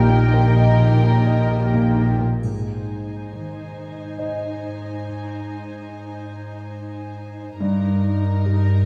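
Heard from further back in a wet scoring-stage reverb, this moving, uplifting cinematic film cue in 3/4 drifts rubato at 64-71 BPM, with a floating, sul tasto symphonic violin section carrying the melody over a second violin section, an intimate baby grand piano with audible action noise, a lush, dark viola section and an up-front cello section, while a very quiet clarinet, oboe, airy flute, smooth-topped French horns and a woody double bass section sound only in the opening seconds before a close triangle enters at 2.4 seconds.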